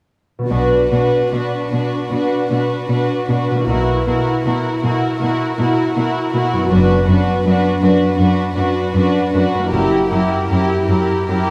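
Classical, a slow and elegiac romantic orchestral passage in B minor at 78 BPM, moving with a yearning rubato and uneven beats, cut from a longer piece. A thumb-plucked, ringing concert harp sets arpeggios going at 0.4 seconds, and the bowed strings join at 0.5 seconds: violins carry a pure, floating sul tasto melody over a second violin line and dark, woody viola accompaniment with vibrato, while a rich cello section and soft-edged double basses hold the bass, the basses stopping at 10.1 seconds. The harmony rests on B minor before settling onto its F-sharp bass and turning to a tense F#7b9, all wrapped in a dark, wet concert-hall reverb.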